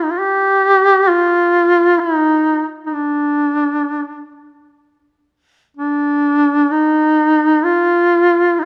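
A moderate recital-hall reverb surrounds this short, solemn Caucasian folk lament, where a warm solo duduk sits up front for the full 8.7 seconds, its scooped notes and vibrato lending the folk-style line a deep sense of longing.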